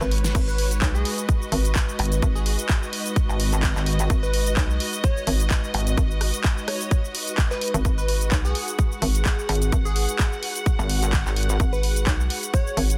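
A heavy, saturated wobble bass pulses on a single low G# in two bursts, from 2.0 seconds and again from 9.5 seconds, pumping against the tight, tape-warm electronic kick that sits up front. This bouncy, swaggering bass house excerpt runs at 128 BPM in G# minor with a 55% swing on the sixteenths, resting on one G# minor chord throughout. A hollow, knocking FM bass punches alongside with fast-attack, decaying notes, while a big-room dance kit adds a huge snare, handclaps, rim clicks, hi-hat, shaker and crash after an opening drum fill. Above, a glassy, crystalline wavetable pluck carries the melody through chorus, cassette-tape coloring and digital delay, with a filter sweep and moving notch on its detuned tone. Behind it, a lush bowed string section with smooth vibrato and a bright, resonant pad with a slow attack and a filter swell both pump with the sidechain, in a dry, dense and heavily limited master.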